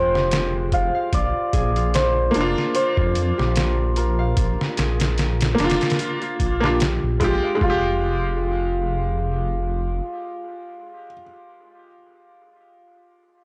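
The recording sounds dry and gritty, as if captured on hardware, with transformer saturation, cassette tape coloring and a small room around it. This brooding, dark trip hop fragment moves with a swung sixteenth-note feel as the harmony shifts from Fmadd9 to Bb and returns to Fmadd9 at 7.6 seconds, where a new section begins. A hammered dulcimer carries the shimmering melody through tape echo, while a bright upright piano plays the accompaniment up front, woody and slightly detuned, with audible action noise, short sustain, harmonic tremolo and its own tape echo. A Celtic harp adds fingerpicked, ringing arpeggios more quietly, roughened by vintage 12-bit sampler grit and an analog delay. Underneath, a dark detuned saw bass rumbles with a beating, deep tone. A compressed, pitched-down sampler-style drum kit with a thumpy kick, a medium-tuned snare and hi-hat sits up front from 0.2 seconds until it stops at 7.8 seconds, carrying the roomy feel of a large space it was re-recorded in.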